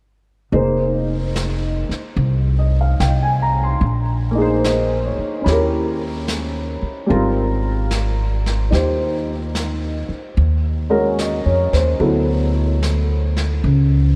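Intimate and melancholic, this swung jazz ballad fragment sets an up-front baby grand piano with an analog chorus over a woody, thumpy pizzicato upright bass on gut strings and a dark, smooth brushed kit with a rolled-off top, all three starting at 0.5 seconds, with the piano falling away at 13.7 seconds inside a dreamy cathedral reverb and a faint mains hum.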